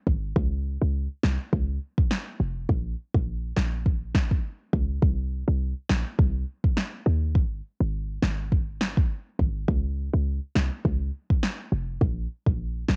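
Dancehall in Bb minor at 103 BPM with a light 16th-note swing, this tough, sultry excerpt pairs a short 808-style bass, punchy and sine-toned with a noise layer and a fast, decaying attack, with a layered electronic deep house drum kit of deep kick and punchy snare, both parts up front from 0.1 to 13.0 seconds. The drums carry a cassette tape character and were re-recorded in a small room, giving the dry home-cassette sound a close feel.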